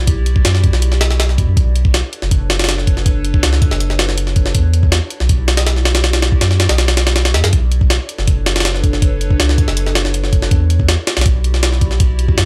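Dry and gritty, this hardware-recorded clip of drum and bass in a jungle style sounds raw and atmospheric, with little room sound around it and a loud overall level. Up front sits a compressed, pitched-up sampler-style drum kit of hi-hat, thumpy kick and high-tuned snare, its tape-warm grit carrying a touch of studio reverb. Beneath it, a soft dub sub bass holds deep, round, sustained notes with a fast attack. Far back in the mix, a warbling, nostalgic pad sustains mellow, detuned chords through chorus, phaser, built-in reverb and vintage 12-bit sampler grit, moving between Em9 and Bm9. The kick drops out briefly from 6.8 to 7.5 seconds, and the passage is cut from a longer piece.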